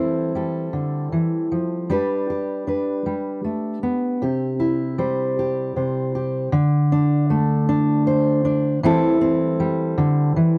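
A dry, close, 1970s-style studio sound with light reverb frames this brief, uplifting folk passage in a straight 6/8, where a lone fingerpicked steel-string jumbo acoustic guitar sits up front with a dark, full-bodied tone, ringing through C6/E, G and C chords before turning to a D5 at 6.5 seconds and settling back on C6/E until the fragment, cut from a longer piece, ends at 10.6 seconds.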